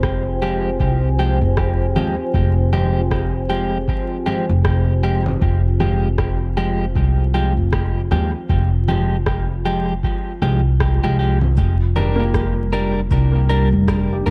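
A woody, growly upright bass sits up front from the opening moment, played pizzicato beneath a deep, detuned sawtooth pad whose slow-attack chords carry chorus, built-in reverb and a cassette-tape haze. This short ambient dub excerpt moves at 78 BPM in 4/4 with a 16th-note swing, in F dorian, shifting from Fmadd9 to Gm/F at 11.6 seconds. In the background, an overdriven analog kick and a tape-softened kit of electronic rim click, congas and shaker, treated with dub echo, keep a spacious pulse. Clean, compressed electric guitar stabs arrive at 0.4 seconds, picked and repeating through dub echo. At 12.2 seconds, a felt-muted upright piano enters with mellow, intimate arpeggios, its action noise audible as it trails off in echo. The whole piece has a hazy, moody, homemade cassette character, flecked with vinyl crackle.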